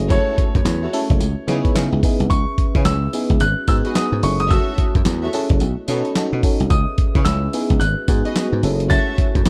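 This confident, punchy new jack swing excerpt opens with nearly the full band in place: a gritty, compressed sampler-style drum kit sitting up front with a thumpy kick, medium-tuned snare, hi-hat, handclaps and tambourine, all carrying a swung sixteenth-note feel in 4/4. A dry, bright thumbed slap bass, foam-muted and punchy, sits beside the drums at the front of the mix. An FM electric piano with a bell-like attack and a chorus effect supplies the accompaniment, while a clear grand piano with audible action noise and long sustain carries the melody high above. Underneath, a very quiet glass harmonica holds ethereal sustained chords with a slow attack and gentle beating, and a lush bowed string section adds smooth stabs with vibrato and digital delay from 0.1 to 9.2 seconds. The chords move through minor sevenths with a B9 along the way, and the dry, dark, warm production keeps the short passage close.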